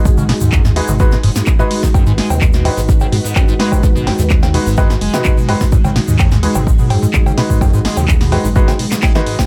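A squelchy, resonant acid bass line with a filter sweep, phaser, tube saturation and lush chorus drives this raw acid house excerpt at 127 BPM in 4/4, set in G# minor pentatonic over a G#m7 chord. Beneath it sit a round, dark analog bass and a mellow, vintage string machine holding sustained chords, both with sidechain pumping, along with an up-front electronic kick, while a punchy analog drum machine adds cowbell, handclaps, hi-hat and snare, and a grainy egg shaker sits in the background. A clear baby grand piano enters at 0.8 seconds with dub-echoed stabs, and a drum fill at 9.0 seconds closes this dry, driving passage.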